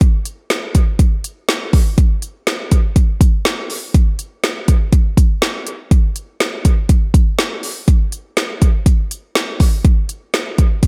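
An up-front, layered electronic deep house drum kit touched by gated reverb, with a deep kick, woody snare and smooth hi-hats, carries this bright, wistful pop excerpt at 122 BPM in a straight 4/4 through its 10.9 seconds, in a dry room.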